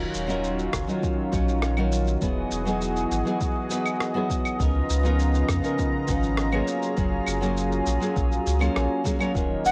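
A full-bodied, fingerpicked nylon-string guitar sits up front in this wistful, smooth sunset chillout excerpt, over a lush, detuned unison pad with chorus and plate reverb, a round sine sub bass, gritty sampler-style shaker, rim click and claves, and an overdriven electronic kick arriving at 0.7 s, all in a lightly reverberant home cassette recording, until a breathy, bright jazz flute appears at 9.7 s just as the piece is cut off.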